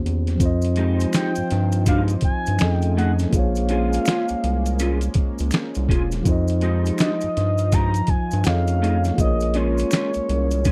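A dry, close 1970s-style studio sound with a touch of digital ambience frames this introspective, soulful neo-soul R&B groove at 82 BPM in F minor, swung on the 16ths and cycling through Fm9, F7alt and Bbm7, where a gritty, pitched-down boom bap drum kit with a thumpy kick and a round, deep analog bass sit up front beneath a mellow, clean tine electric piano, a slightly broken-up, lo-fi electric guitar with ensemble chorus enters at 0.8 seconds, a shimmering, detuned pulse-width pad hangs in the background, close maracas, finger snaps and group handclaps add texture, and a smooth, dark sawtooth synth lead with vibrato and chorus carries the melody from 1.2 seconds.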